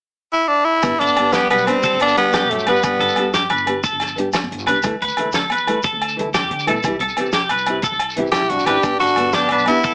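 Highlife guitar band groove in 12/8 at 120 BPM in G major, danceable and warm, where a raspy, gritty tenor saxophone with slapback echo carries the scooped, vibrato-laden melody up front from 0.3 seconds, a punchy trombone adds a forceful second line behind it, a twangy, clean electric guitar with lush chorus spins arpeggios over a fingerpicked steel-string acoustic guitar, and a woody, growly pizzicato upright bass, a tight soul drum kit with a fat snare, ringing agogo bells and a grainy shekere drive the G, Dsus2 and C changes, all heard through light reverb and a small-speaker sound in this brief cut from a longer piece.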